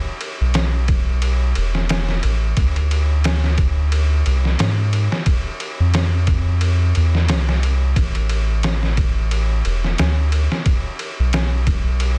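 Melancholic and brooding, this trip hop excerpt moves at 89 BPM in 4/4 with a light 16th-note swing in A harmonic minor. A gritty, pitched-down sampler-style kit of thumpy kick, medium-tuned snare and ride cymbal sits up front with vintage 12-bit crunch and a compressed small-room character, while a deep, round, soft dub sub bass with tube saturation sustains from E1 to G#2, also up front beside it. The sound is dry and close, with a dense, heavily limited modern master.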